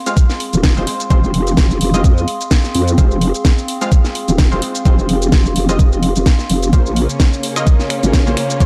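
A swung 4/4 groove drives this swaggering, gritty bass house excerpt, built on a knocking, up-front electronic kick under a garage kit of finger snaps, hi-hat, shaker and a cracking snare. A nasal, saturated wobble bass moves through a filter sweep over a nostalgic, warbling lo-fi pad, while bold, punchy orchestra-hit-style synth stabs carry 12-bit sampler grit and delay, with bass, pad and stabs pumping to the sidechain. At 6.7 s a lush bowed string section with vibrato and portamento joins as the harmony shifts, set in a dark, warm digital ambience.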